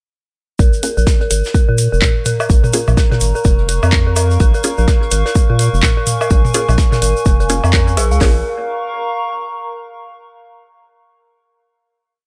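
An eerie, inharmonic FM synth bell loops a 3-step sequence that drifts against the bar, chorused, pumping, echoing and sweeping through a low-pass filter, atop a round, deep analog bass riff and a punchy four-on-the-floor house kit with cracking snare, metallic hats and claps in this sparse, hypnotic minimal techno piece with a swung feel. Muted, resonant dub chord stabs phase and echo, while a very quiet brushed breakbeat, a grainy hand-played egg shaker, and tape-warm electronic toms and woodblock clicking in cross rhythm from 2.0 seconds fill out the groove. A nostalgic, lo-fi pad fades in from 1.8 seconds with slowly shifting chords and rings out as the final chord from 8.2 to 10.1 seconds.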